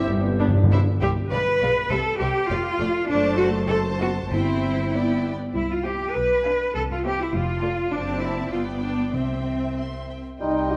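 A quick classical-period movement for symphony orchestra in C major, this graceful, lively passage moves in 2/4 at roughly 93-104 BPM with a rubato feel, and it is cut from a longer piece. Soft-mallet timpani open with a round, dry fill, then return from 4.3 seconds, while an up-front cello section with an intense, smooth top anchors the bass alongside a clear double bass section. One distant violin section carries the focused, vibrato-laden melody as a second, even-toned violin section holds an inner line, and a viola section adds expressive accompaniment with portamento. Oboe, a very quiet hollow silver flute, a barely audible clarinet and mellow, roomy French horn chords appear only at the opening and again in the closing moments, where a soft-attack bassoon joins them from 10.4 seconds. The harmony circles C major through G, D7/F# and a Bdim7, all bathed in the wet glow of a concert hall reverb.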